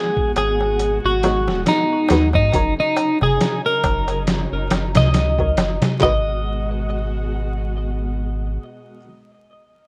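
A rough home-demo sound with a layer of vinyl crackle frames this hypnotic, brooding trip hop fragment, cut from a longer piece and moving at 69 BPM in 4/4 with a swung sixteenth feel in G# minor. Up front, a clean, picked twelve-string electric guitar carries the melody through tape echo. A muted, lute-like buff-stop harpsichord accompanies it with tremolo and the grit of a vintage 12-bit sampler. Beneath them, a dark, lush string section holds bowed chords with expressive vibrato and the same sampler grain. A pitched-down, compressed sampler-style kit of thumpy kick, medium-tuned snare, hi-hat and handclaps enters at 0.2 seconds, joined at 0.4 seconds by a crisp, dry metal-shell darbuka, and both fall away by about 6 seconds as the music moves into a new section. A deep, round dub sub bass with a soft triangle and square-wave tone sits prominently from 0.4 seconds, under chords that shift from G#m7 to D#m7/F# and back to G#m7.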